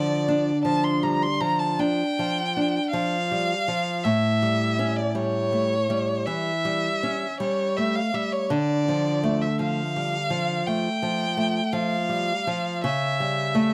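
A single rich, focused violin sings a yearning melody with vibrato, bowed up front and set in plate reverb, over a small, fingerpicked nylon-string guitar whose finger squeaks are audible close by. This solemn romantic duo in D minor moves at a rubato 54 BPM in 12/8, with the harmony shifting between Dm and A7 before settling on A7/C# at 12.8 seconds. The production is dark and warm, with a light reverb, in this excerpt cut from a longer piece.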